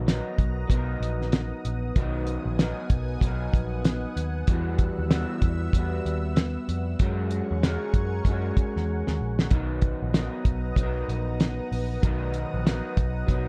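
Indie bedroom pop at 95 BPM with a sunny, dreamy mood and a swung 16th-note feel in B major, built on a thuddy, cloth-damped acoustic kit with a fat snare and gritty, rolled-off top sitting up front, a round, foam-muted vintage bass, a twangy, slightly broken-up guitar through a small old amp with subtle chorus and warbly pitch drift, and a thick, detuned unison pad with chorus and phaser, moving from Bmaj7 through Emadd9 and F#add9 with a drum fill at 8.9 seconds before returning to Bmaj7 in a dark, lightly reverberant production cut from a longer piece.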